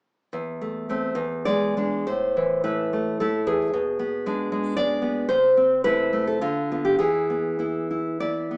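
A solo nylon-string guitar, bright and up front, carries this short, wistful and passionate romantic piece for classical guitar, cut from a longer work. Fingerpicked across a span from E2 to D5, the playing moves in a rubato three-beat lilt, with finger squeak audible on the strings. The harmony opens on Am/E and E7, then the second section from 2.1 seconds travels through Am, G#dim/B, Am/C and Bdim/D before settling on E at 7.0 seconds. The guitar sits in a wet studio reverb and is heard from further back in the room, giving it a small-speaker quality. The fragment runs from 0.3 to 8.6 seconds.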